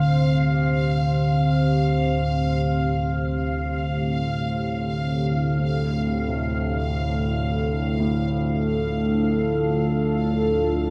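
In free time, this ominous dark ambient drone in D minor rests on a single Dm7 chord, with a deep, moody pad of sustained chords up front, carrying chorus and its own reverb, over a detuned, evolving analog drone low beneath it. A resonant, bubbling stepped-filter texture hovers high above, while a mellow grand piano enters in the background at 0.5 seconds with arpeggios trailed by diffuse ambient delay. The whole fragment sits in a vast, echoing cathedral space with a reverb tail of 6.3 seconds.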